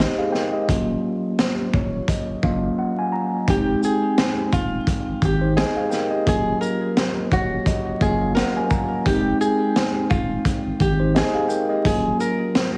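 A fingerpicked flamenco guitar carries the melody in this tough, dark boom-bap hip-hop excerpt, entering at 3.5 seconds with an acoustic, up-front tone that is filtered and touched by tape echo. Underneath, a mellow tine electric piano holds the harmony, clean and direct, colored by cassette tape and filtering as it moves between Fm9 and Ebm9. A crunchy breakbeat kit of kick, high-tuned snare, hi-hat and shaker swings on the sixteenths, its gritty, saturated sound dark with a rolled-off top. A deep, thick sine sub bass with a fast attack sustains beneath it all. The whole piece sits in a small room with light reverb, vinyl crackle and a heavily compressed radio sound, and a brief silent gap from 2.8 seconds sets up the guitar's arrival.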